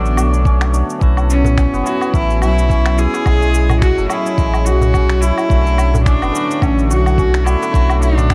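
Mystical and earthy, this organic downtempo excerpt moves at 107 BPM in B dorian with a lightly swung sixteenth-note feel, cycling through Bm9, A69 and F#m9 chords. A rich, floating cello carries the melody, bowed sul tasto by one player with a soft attack and a distant placement, touched by tape echo. Beneath it, a barky tine electric piano, lightly overdriven through a combo amp, plays accompaniment with sidechain pumping and tape echo, while a shimmering hammered santur rings out arpeggios and a warbly, nostalgic lo-fi pad sits in the background with chorus, phaser, 12-bit sampler grit and pumping of its own. A deep, round sub bass sits up front, joined by a gritty, sampler-style electronic shaker, woodblock and finger snaps at 0.1 seconds and a thumpy, compressed electronic kick at 0.5 seconds. A very quiet, crisp metal-shell darbuka enters close and dry at 1.3 seconds, and the whole blend sits in light reverb with a small room ambience.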